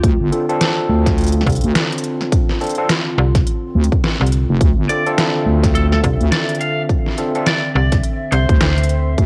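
Glitch hop with a playful, gritty mood and a swung sixteenth-note feel, this short cut from a longer piece sits on a single Dm7 chord throughout its 9.3 seconds. A punchy, up-front electronic kick and a dubstep kit with a deep snare and crisp hats carry a tape-softened character, while a heavy, saturated wobble bass with chorus wobbles beneath them. From 1.5 seconds a snappy FM bass with a metallic, digital attack joins in, and an overdriven tine electric piano, gritty as if through a combo amp, plays stabs with sidechain pumping and analog delay from 0.3 to 7.5 seconds. Behind it all, a warbling, nostalgic pad of detuned, ring-modulated tones holds dark sustained chords, roughened by 12-bit sampler grit and cassette wobble and shaped by sidechain pumping. At 4.9 seconds a lightly driven, twangy lead guitar enters with a picked melody in the upper register, dusted with sampler grit and echoing delay, and the whole has the lightly reverberant, lo-fi feel of a home cassette recording.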